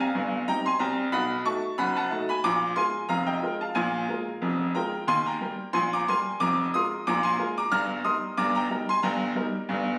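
A bright, woody upright piano plays solo and up front through this jaunty, cheerful ragtime excerpt in Eb major at 91 BPM in 2/4 with a light 16th-note swing, moving from Cm through B7 and Bb5 to Eb by 5.1 seconds across a range from F1 to F6, its brilliant, open tone caught by a phone in the room and set in moderate studio reverb with compression.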